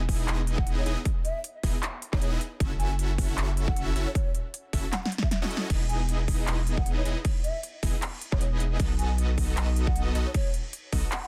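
Lush, detuned supersaw chords and a thick, saturated sub bass open this bright, euphoric future bass excerpt, both pumping under sidechain as a punchy, overdriven kick and a crisp big-room kit of snare, handclaps, hi-hat and crash drive a swung, half-time groove. A breathy, hollow concert flute with gentle vibrato sits in the background from 0.6 seconds, its tongued line trailing dub echo over chords moving from Emaj7 through F#m7, back to Emaj7 and on to B7. A drum fill at 4.9 seconds punctuates the dense, heavily limited mix.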